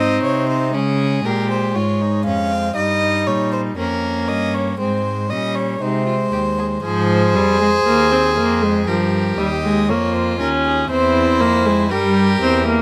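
Classical, baroque-style fugue for string quartet, this short passage cut from a longer piece moves at a solemn yet driving 59 BPM in 4/4 with a straight feel, settling into F minor from 6.8 seconds. All four players use gut strings in period style, giving the ensemble a reedy, bowed character, with tuning set at A4 = 439 Hz. The first violin carries the melody between Ab4 and F5 with an airy, nasal bow and sits close and up front, while the second violin, rich in tone and close as well, traces a second line from C4 to Ab4. The viola fills the accompaniment from F3 to Db4 with a light vibrato and also stands up front, and the cello anchors the bass from Eb2 to Db3 with a rich sound. The harmony begins on Ab and Bbm7 before turning through Fm, Gm7b5 and C/E in the closing stretch, all four parts playing together throughout under a light reverb.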